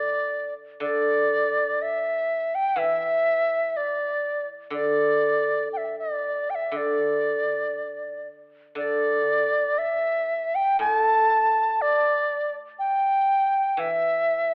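Pastoral yet festive, this short Chinese traditional chamber passage, cut from a longer piece, moves with a free rubato feel. A large bamboo dizi carries the melody throughout with a buzzing membrane, a pure, reedy tone, tongued notes and vibrato, while a guzheng played with fingerpicks supports it from low in its range with ringing, silvery notes. Both instruments sit up front in light reverb, and the whole recording has a narrow, telephone-like sound.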